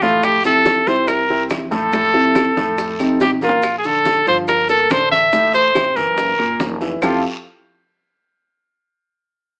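A straight 4/4 groove at 141 BPM drives this sunny, sophisticated Afro-Cuban jazz passage in F major, where a clear, punchy trumpet with light vibrato and scooped notes leads up front over warm grand piano, a dark, growly pizzicato upright bass, and background percussion of round low-tuned bongos, ringing congas, raspy guiro, grainy maracas and woody claves entering at 0.2 seconds, with a drum fill at 3.2 seconds, moderate studio reverb and an AM radio sound.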